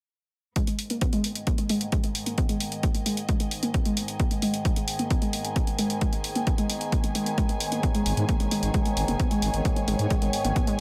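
Industrial and driving, this peak-time techno excerpt runs at 132 BPM in G# minor, with a punchy, up-front electronic kick and a tape-tinged electronic hi-hat starting at 0.6 seconds alongside a warbly, dusty pluck riff that carries a filter sweep, analog chorus, dub echo and sidechain pumping. A dark, woody string section, lush with vibrato, also begins fading in from 0.6 seconds, and a resonant sawtooth-and-sine drone with moving overtones enters at 1.3 seconds, both pumping against the kick. A growling, thick FM bass arrives at 8.1 seconds, all set in a light reverb.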